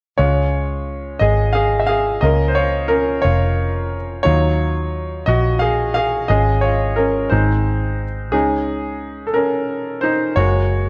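Worn, warbling cassette tape with drifting pitch colours this tender, romantic pop fragment, set in a small room with a moderate echo-chamber reverb. A brilliant, intimate grand piano sits up front in 6/8, its action noise audible as it leads with accompanying chords, from a Db opening through Ebmadd9 and a closing Gbadd9 at 10.4 seconds. Beneath it, a dark, round, foam-muted vintage electric bass, played with the fingers, holds down the low end.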